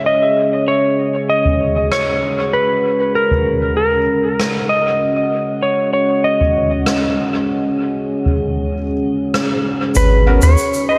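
Ambient dub with a deep, meditative mood, heard as a short excerpt from a longer piece in a straight 4/4. A clean, electric lap steel guitar carries the melody up front throughout, its slide tone trailed by dub echo, while a dark, detuned pad holds sustained chords beneath it with slow-attack swells of chorus and its own built-in reverb. From 1.5 seconds a soft-mallet drum kit of rim clicks, shaker and toms sits low in the mix, its natural, acoustic sound carrying small-room ambience and dub echo. Near the close, at 10.0 seconds, the harmony moves from a suspended C# chord to G#m11 as a round, soft sub bass arrives briefly up front, joined for a moment by woody, boxy upright piano stabs. A wet recital-hall reverb wraps the whole sound.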